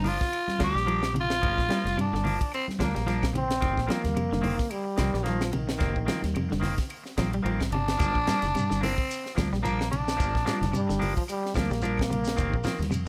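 Intense and funky, this afrobeat excerpt in 4/4 rides a lightly swung sixteenth-note feel over a vamp that shifts between Gm7 and F7sus4. A raspy, gritty tenor saxophone leads up front, playing from the start and returning at 7.7 seconds, while a clear, punchy bass trombone takes a second line at 3.4 seconds and again later. Underneath, a semi-hollow electric guitar picks hollow-toned arpeggios in the background, and a clean electric guitar adds bright stabs trailed by tape echo. A round, foam-muted fingered bass anchors the groove alongside a dry, tight funk kit with a high-tuned snare, kick, hi-hat and ride cymbal. Thin-skinned congas, very quiet woody claves, a grainy, saturated shekere entering at 8.0 seconds and a barely audible ringing Celtic harp at the very start fill out the percussion and colour in a moderate studio room.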